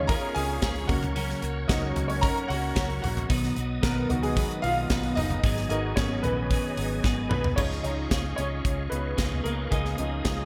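Piano-driven pop in D-flat mixolydian at 112 BPM in a straight 4/4, this brief, anthemic cut from a longer piece carries a warm, bright 1980s-style digital sheen with light reverb. A clear, polished baby grand piano sits up front with analog chorus, taking a solo across the whole passage and moving through chords from Db and Gb/Db to Cb and Abm7 before landing on Dbadd9 at 7.6 seconds. A twelve-string electric guitar plays a clean, picked, compressed riff, while a reedy tonewheel organ holds sustained chords in the background, its key click and chorus vibrato colored by a fast rotary speaker. A vintage foam-muted fingered electric bass adds a dark, round, amped low end. The modern studio drum kit enters at 0.1 seconds with a punchy kick, medium-tuned snare, hi-hat, toms and bright cymbals in an airy small room with gated reverb, and a drum fill from 7.0 seconds leads into the closing section.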